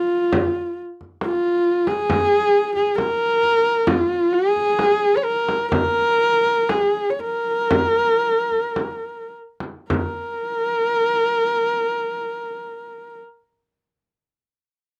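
In a straight 4/4 that slows between 2.1 and 9.9 seconds, this solemn, windswept Mongolian folk piece is cut from a longer work. A dark, husky horsehead fiddle, bowed by a single player on horsehair strings, carries the melody up front from the opening moment to 13.2 seconds, singing with expressive vibrato and portamento. A deep, vintage frame drum with a band-limited tone joins just after it begins and sounds until 10.4 seconds, all captured in a dry, close 1970s-style studio sound with light reverb.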